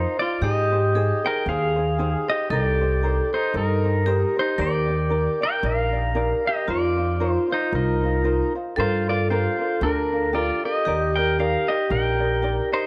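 A lilting swung 4/4 at 115 BPM carries this relaxed, languid Hawaiian excerpt, where a bright, twangy electric pedal steel guitar sings the melody up front with fingerpicks, slide and volume swells, a woody, growly pizzicato upright bass anchors the low end, a mellow thumb-plucked ukulele plucks lightly beneath, and a ringing vibraphone with slow motor vibrato enters at 0.4 seconds as a second line, all bathed in a moderate concert hall reverb over chords moving from Abmaj7 through Cm7, Ebmaj7, F7sus4 and Gm7.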